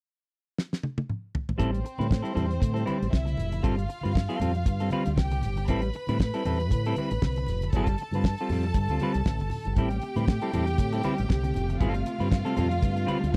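A dry, close 1970s-style studio sound frames this glamorous, celebratory disco cut at 118 BPM with a lightly swung 16th feel: a damped drum kit with a fat snare and tight kick opens on a fill at 0.6 seconds, and at 1.6 seconds a fingered electric bass through an envelope filter, a dark, clean semi-hollow electric guitar, smooth bowed violins with vibrato and very quiet low-tuned congas join over alternating Am7 and G9sus4 chords, before a lush string section adds sustained chords in the background from 9.8 seconds.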